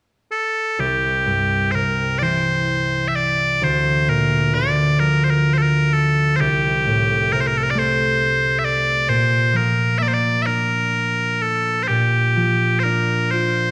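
In a rubato 6/8 at 43 BPM, this nostalgic, wistful Celtic slow air in C mixolydian sets piercing solo bagpipes up front on the melody from 0.3 seconds, joined at 0.8 seconds by a ringing, fingerpicked concert harp moving through C, Bb/D, C5 and Bb, all bathed in a moderate 1.6-second scoring-stage reverb within a dark production, in a brief cut from a longer piece.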